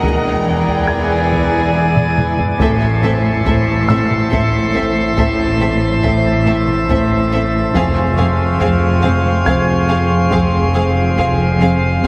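Mysterious and ominous, this slow cinematic suspense cue moves at 70 BPM in 3/4 in A harmonic minor. Bowed violin sections carry a lush, distant melody, a rich second line and a high texture over a quiet viola bed, while dark, roomy French horns and a glassy, chorused glass-harmonics pad with drifting overtones sustain the chords. Underneath, cellos play a focused riff and bass line with double basses and a detuned, warbling analog drone, as taiko drums with heavy sticks play a fill from 2.0 s, close, dry timpani strike at 2.6 s, and a mellow baby grand piano adds faint high texture, all bathed in a wet concert-hall reverb and a heavily compressed, radio-like sound.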